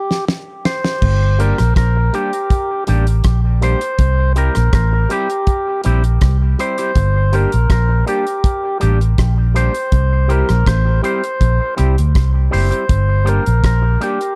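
Laid-back and meditative, this roots reggae excerpt opens with the organ's melody over a drum fill and stop from a damped, dry 70s kit with a fat snare and dark cymbals, then settles over Gm and C as a round, foam-muted bass sits up front, a bright, twangy envelope-filtered guitar adds dub-echoed accompaniment, and the lightly overdriven percussive tonewheel organ carries the melody through heavy dub echo in an otherwise dry, echo-soaked mix.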